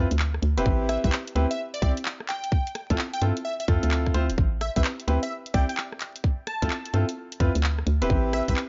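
A dry, crackling, dark-topped recording opens this skippy, moody excerpt of two-step UK garage at 129 BPM with swung sixteenths, where clear, up-front grand piano stabs with dub echo and a hollow, bouncy FM bass move between Am9 and Dm9 over a layered garage kit of handclaps, hi-hat and rim click, joined at 0.7 seconds by a tight electronic kick and at 0.9 seconds by a catchy, detuned unison sawtooth lead with vibrato and its own dub echo.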